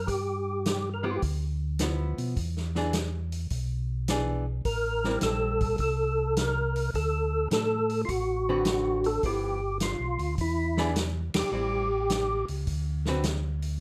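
Swinging and soulful, this soul jazz organ trio excerpt moves at 105 BPM over a G6, E7, Am7, D6 cycle, with a fat, lightly overdriven tonewheel organ carrying the melody through slow rotary speaker and chorus vibrato, its third-harmonic percussion and key click up front, while a round, mellow second organ voice supplies the bass, a vintage kit with dark cymbals and a punchy kick keeps the swing, and a clean, compressed hollow-body archtop guitar joins at 1.0 s, all in a moderate club reverb, with a band accent landing at 11.2 s.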